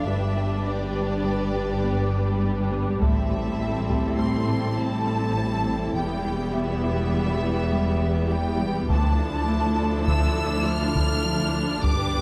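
Violins, violas, cellos and double basses open together over a dark analog pad, setting a vast, brooding tone for this hybrid orchestral and electronic film cue at 102 BPM in 5/4. The violins carry a focused, lush melody high above a smooth second violin line, while violas with vibrato fill the middle and rich cellos and double basses anchor the low end, the cellos sitting in the background. Beneath them the detuned, wave-folded pad holds sustained chords with chorus, and almost at once a very quiet, tine-like FM synth pluck adds mellow, round arpeggios. A compressed, saturated taiko ensemble struck with heavy sticks breaks in at 3.0 seconds, drops out, then returns at 8.9 seconds to drive the close of this passage from a longer piece. The harmony moves through G, Am7, Em and Dmadd9, and a moderate scoring-stage reverb lends the whole ensemble a sense of space.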